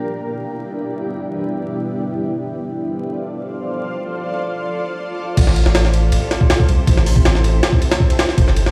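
Dark and atmospheric, this drum and bass cut, steeped in jungle, opens on a granular cloud pad holding sustained chords, its cloudy, blurred, detuned tones softened by a slow attack, long release and its own reverb, roughened by vintage 12-bit sampler grit. Through the first 5.4 seconds a filter sweep moves across the pad as the harmony shifts from Em7 to Dm7. At 5.4 seconds the drop lands on Am7, bringing in a jungle sampler-style drum kit that is compressed, pitched up and tape-toned, with a thumpy kick, a high-tuned snare, hi-hat, ride and crash cymbals. A soft dub sub bass enters at the same moment, deep and round with a fast attack and sustained notes, sitting up front alongside the drums. The whole piece sounds as if played on a big sound system in a bare room, wrapped in large studio reverb and vinyl crackle.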